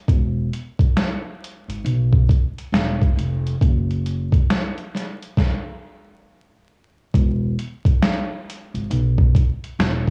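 A sampler-style boom bap drum kit and an upright bass enter together at 0.1 s, setting up a cosy, dreamy lo-fi hip hop groove at 68 BPM in 4/4, with swung sixteenths, in E major. The compressed, gritty kit carries a thumpy kick, a medium-tuned snare, hi-hat and finger snaps, colored by cassette tape and re-recorded in a large room, yet sitting up front. Beneath it, the pizzicato upright bass stays low between E1 and B1, its gut strings giving a woody, dark acoustic tone, also up front but a touch quieter than the drums. Both parts halt for a stop from 5.4 to 7.1 s, after which a new section begins and runs to the end of this cut from a longer piece. Home cassette recording and vinyl crackle lend an intimate, lived-in character, with only a little reverb.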